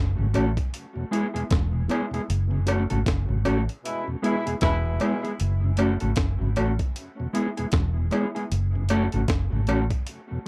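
Roots reggae excerpt at 77 BPM in F# minor with a serious, meditative mood, built on a dark, foam-muted fingered electric bass, a gritty sampler-style drum kit with a thumpy kick and high-tuned snare, a compressed cowbell, a clean, dark electric guitar and a flute-like tonewheel organ with key click, chorus vibrato, slow rotary speaker and dub echo, while a distant, roomy horn section with light vibrato and dub echo appears from 3.8 to 5.2 seconds during a band accent, all captured in a dry, close 1970s-style studio sound.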